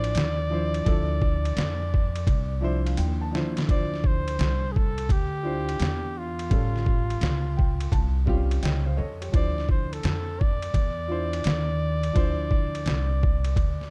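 A gritty, pitched-down sampler-style drum kit with a thumpy kick, a woody pizzicato upright bass, a vintage grand piano with short sustain and a soft-attack flugelhorn solo with vibrato open this smoky, nocturnal jazz-hop excerpt together at 85 BPM with a swung 16th-note feel, moving from Dm9 to A7alt at 6.5 seconds and back while drums and piano fill together at 2.3 seconds and the piano fills again at 7.2 seconds, all inside a dark, warm small-room sound.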